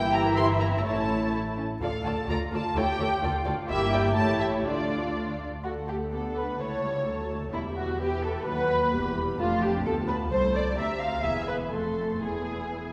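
In a quick 2/4 pulse of about 119-131 BPM, played with a rubato feel, this restless, stormy classical-period movement for muted string orchestra opens in D minor and turns to D major at 5.6 s, and the clip is cut from a longer piece. Bowed con sordino violins carry the melody between D5 and C6 with a veiled, soft-attacked tone and smooth top, while a second violin section, lush and up front, weaves a line beneath them. Violas, sounding distant, fill in the accompaniment, and the low end is shared by cellos with light vibrato and a double bass section heard close and dark. The harmony moves briskly, circling dominant and diminished chords in the opening before brightening into D major and moving on toward E minor, then sliding through B-flat and E to an F chord and back to E near the end. All five sections play throughout the 12.9 seconds, set back in a wet concert hall with a 2.0-second reverb tail that lends the muted strings a shadowy depth.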